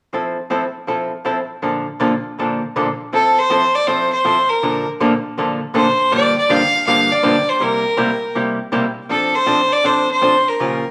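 A nasal, earthy fiddle with light vibrato enters at 3.1 s to carry the melody over a dark, clean, picked hollow-body electric archtop guitar that opens the cheerful, swinging country passage alone at 161 BPM in F major, moving through Fmaj7, Bbmaj7, Gm7 and C7 to settle on F6, with the band playing live together in a large studio with moderate reverb.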